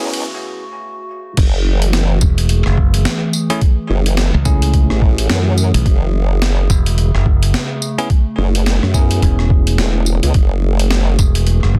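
A dense, heavily limited master with light reverb gives this swaggering, playful glitch hop excerpt a tight, forceful sound, its swung sixteenths lending a loose strut. It opens on a short build-up and break, where a filter sweep runs across a bell-like, clean tine electric piano playing bright stabs with digital delay, over a warbling, nostalgic pad of sustained chords that sits dark and lo-fi under chorus and its own reverb, both parts pumping against the sidechain. A formant-sweep wobble bass, detuned, saturated and up front, churns low from the start, while a boom bap sampler-style kit adds gritty texture with a high-tuned snare, rim click, hi-hat, tambourine and crash, re-recorded in a large room. The drop lands at 1.4 seconds with an overdriven, pitched-down electronic kick that hits thumpy and forward. At 2.2 seconds a punchy, direct fingered electric bass joins the low end and carries on through to the cut.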